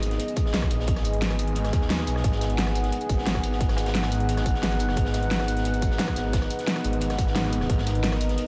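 Lightly reverberant studio sound frames this brief cut of futuristic, tense, dark technical drum and bass in G# minor at 176 BPM: a moody, detuned analog pad with chorus and sidechain pumping sustains a G#m chord over a thick, swirling phased saw bass with tube saturation, while a punchy, tape-toned electronic kick enters at 0.4 s beneath a layered dubstep kit of huge snare, metallic hats, rim click and tambourine, and a gritty, saturated breakbeat kit adds high-passed hi-hat and snare.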